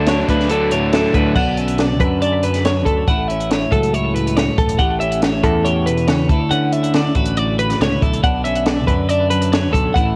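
A pair of bright, clean twelve-string electric guitars leads this wistful, intricate fragment of math rock and midwest emo, one picking arpeggios through tape echo while the other carries the chordal accompaniment, both compressed with a cassette-tape coloring and the arpeggio part carrying an extra twang. A crunchy, double-tracked overdriven guitar riff opens the piece and drops out at 1.4 seconds, after which the harmony drifts through lush extended chords such as Dmaj7, Bm9 and Dmaj9. Underneath, a growling fingered electric bass with its own overdrive adds a bright, amped edge. A compact cocktail drum kit sits up front with a dark, smooth tone, a high-tuned snare, punchy kick, hi-hat and crash cymbal in a small room. The whole take has the intimate feel of a home cassette recording wrapped in light reverb, in a straight 4/4 that keeps the intricate parts moving.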